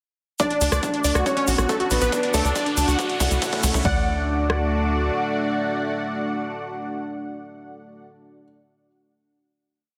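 A punchy, detuned supersaw stab leads this short, euphoric uplifting trance piece at 139 BPM in D major, playing a repeating sixteenth-note riff in octaves with lush chorus, sidechain pumping and tape echo. Behind it, a clear grand piano with digital delay repeats its own riff in octaves and a very quiet unison pluck doubles the lead line, while a thick sawtooth pad sustains the D, Bm and A/C# chords through chorus and phaser. A nasal, galloping sequencer bass and a layered electronic kit drive the build alongside a grainy hand-played shaker and a background riser and drum fill: four-on-the-floor kick, metallic hats and rim clicks. The drums stop by 4.6 s and the bass by 5.1 s, leaving the lead, piano, pluck and pad to hold a final D chord from 3.9 s, all set in a moderate digital room reverb and a dense, heavily limited modern master.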